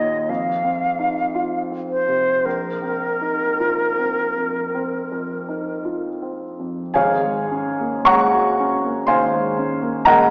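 Heard through a small speaker in a wet concert hall, this short, mysterious and hazy impressionist classical cut in rubato 4/4 pairs an airy, expressive concert flute melody with tongued notes and vibrato, which stops at 5.8 s, against an open, warm baby grand piano accompaniment that carries on alone to 10.3 s, its harmony moving to an Ab9sus4 chord at 7.0 s.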